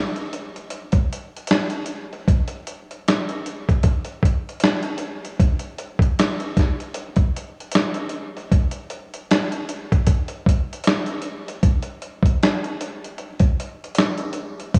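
A swung 16th-note groove at 77 BPM in 4/4 sets a slow hip hop pulse in this reflective, melancholic excerpt cut from a longer piece. The only part is a dusty soul sampler-style drum kit of kick, snare and hi-hat, entering at 0.2 seconds and playing through to 14.8 seconds, placed up front in the mix. Its sound is gritty and compressed, with a thumpy kick, a fat snare and the crunch of a vintage 12-bit sampler, re-recorded in a large room. The whole recording sits under a moderate plate reverb with a long 3.1-second tail and a small room ambience, and is coloured by worn, warbling cassette tape with a warbly pitch drift. The groove moves into a second section at 8.5 seconds, keeping its reflective, melancholic character to the end.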